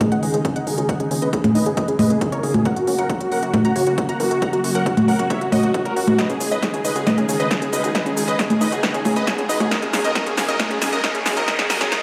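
This euphoric, emotional uplifting trance build-up at 136 BPM in a straight 4/4 opens at 0.0 s with huge, detuned supersaw chords carrying the melody through a sidechain-pumped filter sweep and digital delay, shadowed by a very quiet, bright unison pluck on a second line. Beneath them a thick, slow-attack pad holds sustained chords with chorus and phaser, while a tight, driving sequenced synth runs arpeggios in the background, its own filter sweep colored by chorus, phaser, cassette tape and delay. Up front, a techno kit of punchy snare, smooth hats, shaker and congas sits over a layered electronic kick, both drum parts bathed in studio reverb, and a funky, decaying analog bass with a filter pluck pumps in the background. A drum fill begins at 6.2 s, and a very quiet electronic riser joins at 8.8 s as the harmony moves from C#sus2 to F# and back before landing on D#m7. The whole cut, taken from a longer piece, has a big, roomy sound with a moderate scoring-stage reverb.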